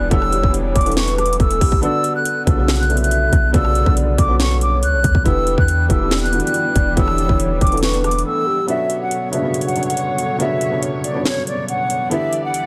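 An airy, distant concert flute carries the melody with delay through this melancholic, menacing half-time trap excerpt in B minor at 140 BPM. Until 8.7 s it is shadowed by a hollow, warbling clarinet-like synth lead with chorus. Beneath them sit a felt-muted upright piano with audible action noise, veiled con sordino strings and a deep, boomy 808 bass that stops at 8.2 s. An overdriven trap kit of hard-clipped kick, sharp snare and metallic hats drops out briefly just before a new section begins at 8.7 s.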